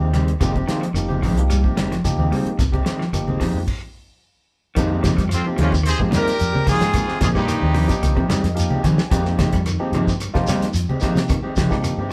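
Afrobeat with a defiant, driving feel at 110 BPM in F minor, opening on Fm9 as barky tine electric piano, slightly broken-up electric guitar stabs, a round, punchy fingered bass, a clean electric guitar with spring reverb playing arpeggios in the background, and a damped 70s drum kit with dark cymbals and a tight kick lock into a straight groove alongside ringing low-tuned congas and a grainy shekere. After a stop at 3.7 seconds, a brilliant, tight horn section enters at 5.3 seconds carrying the melody, with a growling trumpet and a raspy baritone saxophone on second lines beneath it, and a tine electric piano fill at 8.0 seconds leads the harmony to Abmaj7/F. The band sounds like it is playing live in one room with moderate studio reverb, and this is cut from a longer piece.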